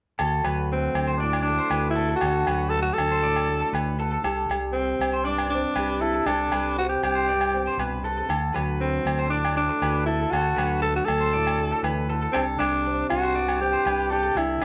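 A straight, steady four-beat groove carries this joyful, carefree highlife cut, where ringing agogo bells and grainy maracas sit close beside a round, punchy fingered electric bass, a woody, boxy fingerpicked acoustic guitar with old strings, and a twangy, slightly broken-up electric guitar spinning arpeggios through spring reverb, while a breathy, raspy alto saxophone with scooped notes and vibrato enters up front at 0.7 seconds to lead the melody over a band playing live in one room as the harmony sways between D and Csus2.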